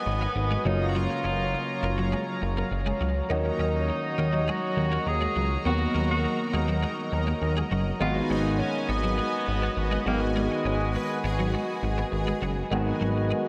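Moody, dramatic pop at 102 BPM in G# dorian, drenched in huge ambient reverb, where a clear tenor saxophone with vibrato and scooped notes carries the melody through tape echo over an intimate concert grand piano with audible action noise, a brassy analog pad with chorus and tremolo, a twangy twelve-string electric guitar riff in the background, and a fat, saturated analog bass up front, while a biting violin section adds a brief second line from 10.9 s over chords moving from G#m7 through F#maj7, D#m7 and Bmaj7/D#.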